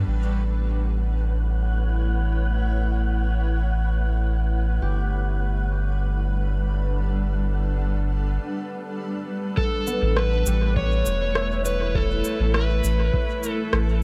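An up-front, round sub bass anchors this peaceful, spacious ambient dub excerpt at 101 BPM in 4/4, holding low under a cloudy, evolving granular pad that sustains blurred chords in A mixolydian, moving from Aadd9 to Gmaj7 and back. A ringing concert harp sits in the background with fingerpicked arpeggios carried on dub echo, dropping out briefly before returning at 4.8 seconds, while a breathy, wind-like tuned noise texture drifts through the opening stretch. After a break from 8.4 seconds, an overdriven slide guitar enters at 9.6 seconds with a short melody roughened by vintage 12-bit sampler grit and dub echo. Alongside it arrive a deep, overdriven electronic kick and a tape-tinged shaker and rim click, the latter darkened by low-pass filtering and thrown into echo. The whole mix is echo-heavy, with a digital ambience that keeps the space open.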